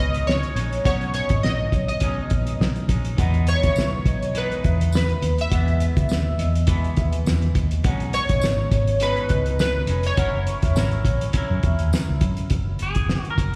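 Heard as a live gig through a venue PA with recital-hall reverb, this hazy, wistful indie and bedroom pop clip at 103 BPM with a light 16th-note swing sets glossy, detuned retro synth keys carrying the melody over an airy, ringing vibraphone second line, alongside bright, twangy clean electric guitar with warbly pitch drift, a dark, round foam-muted fingered bass and a muffled, cloth-damped thuddy drum kit with a fat snare up front, while a jingly tambourine sits in the background from 3.8 s and the guitar takes a brief solo at 12.5 s after the keys and vibraphone stop at 11.8 s.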